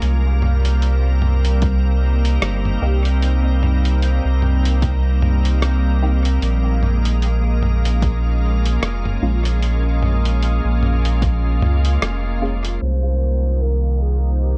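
Meditative and spacious, this ambient dub excerpt rests on a round, up-front sine sub bass and a pure, organ-like pad with chorus and reverb, moving from Cm7 to Bbm7 and back. A muffled, pitched-down, sampler-style kit of hi-hat, rim click and toms carries dub echo, while a punchy electronic kick sits in the background from 1.6 seconds and a detuned, phased chord stab adds its own dub echo in the background. At 12.8 seconds the drums stop, a filter sweep begins, and a dark, classical-style solo clarinet enters with its own echo.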